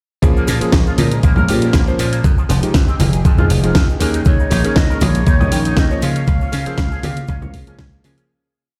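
An overdriven, thumpy electronic kick drives four-on-the-floor through this sensual, cosmic nu-disco piece, joined by a tape-warm house kit with a cracking snare and disco backbeat, ringing cabasa and congas, a punchy, foam-muted slap bass jumping octaves, a twangy envelope-filtered guitar step sequence drenched in chorus and delay, syncopated clangy electric grand piano stabs with delay, and a very quiet, thick detuned pad, while an airy, reedy flute enters at 4.3 seconds with tape-echoed call phrases before the whole drop fades out from 5.6 seconds in a large, reverberant room.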